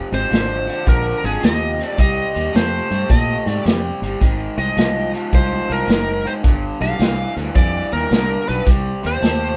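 Electric blues shuffle in C minor at 108 BPM, swung and smoky with a brooding mood, moving through Fm7, Cm, Ab and a bare G7 before settling back on Cm in this short excerpt. A raw, picked garage guitar with overdrive starts the riff at 0.0 seconds, and a smooth, bright overdriven lead guitar sits up front carrying the melody high above it. Underneath, a round, foam-muted fingered electric bass and a punchy, natural acoustic drum kit of hi-hat, kick and snare play together as a live band in one room with light reverb.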